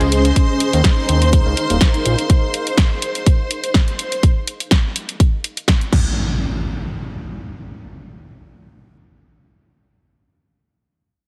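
An electronic impact opens this joyful, uplifting piano house excerpt at 124 BPM, over shimmering vintage string-machine violins, a fat sawtooth analog bass with tube saturation, a cloudy, evolving granular pad with built-in reverb, and a house drum kit of punchy snare, bright hats and crash cymbal, with the strings, bass and pad pumping to the sidechain. A layered electronic kick enters up front at 0.4 s, the bass and pad drop away around 2.3 s, and a second impact lands at 5.9 s just before the drums stop. The mix has a heavily compressed, radio-like sound with light digital ambience.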